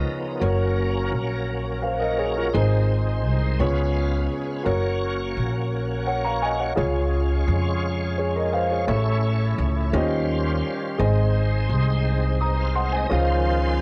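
Uplifting and hopeful, this slow gospel excerpt in 6/8 pairs an up-front, long-sustaining baby grand piano with a bright, shouting tonewheel organ whose key click and slow rotary shimmer carry sustained chords and a fill at 3.6 seconds, while a woody, growly pizzicato upright bass enters at 0.4 seconds and a lush bowed string section arrives at 13.1 seconds on a Dbmaj7, all framed by light reverb and the soft grain of a home cassette recording.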